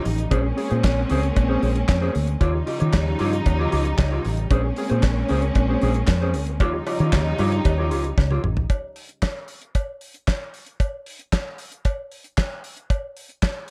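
A foam-muted fingered electric bass sits up front in this danceable, sultry disco excerpt at 114 BPM, vamping between Bbm9 and Eb9 with a dark, clean electric guitar and a lush, woody bowed string section holding sustained chords with vibrato. A polished, damped 70s drum kit with a fat snare, tight kick, hi-hat, toms and handclaps drives the groove alongside a metallic cowbell, and after a drum fill at 8.2 seconds the guitar, bass and strings drop out, leaving drums and cowbell alone from 8.7 seconds until 13.7 seconds. The sound is dry and close, a 1970s-style studio recording with little reverb.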